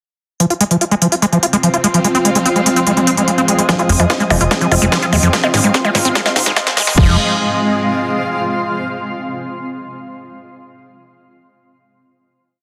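A squelchy, gritty acid bass riff and a techno kit of smooth hats, cracking snare, percussion blips and crash open this intense psychedelic trance piece in F minor at 146 BPM, soon joined by a cloudy granular pad of bright, slowly shifting chords and a swarming, tense drone that sits in the background, both pumping with the sidechain. A very quiet, nasal wobble bass adds short phrases from 2.4 seconds, and at 3.7 seconds a heavy four-on-the-floor kick arrives, followed at 3.9 seconds by a fat, saturated analog bass in galloping sixteenths, as a build-up unfolds with a drum fill and a filter sweep on the acid line. It all resolves into a final chord from 7.0 seconds, the pad lingering in light reverb on a dense, heavily limited master.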